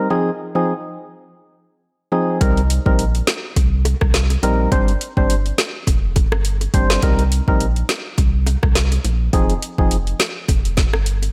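A swung dancehall groove at 104 BPM in C minor sets a sultry, hypnotic mood, as a hollow, chorused organ stab opens alone before a round sub bass, an up-front electronic drum kit with a deep kick, woody snare and metallic hats, and tight, high-tuned bongos in the background join at 2.4 seconds, all moving through Fm7, Cm7 and Gsus4 under light reverb in this excerpt from a longer piece.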